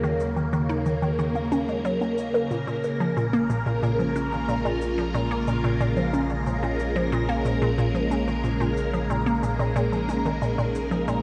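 Hypnotic and mysterious, this excerpt of ambient, sequencer-driven space music moves at 91 BPM in Bb minor, shifting from Ebm7 to Bbm7 at 2.5 seconds under a wet, spacious reverb. A bright, swirling string machine holds sustained chords up front through ensemble chorus and phaser, while a hollow, nasal square-wave pluck with a detuned, bouncy edge repeats a chorused, delayed riff over a round, deep analog bass. Overdriven electronic shaker and woodblock sit in the background, fading in across the full 11.2 seconds.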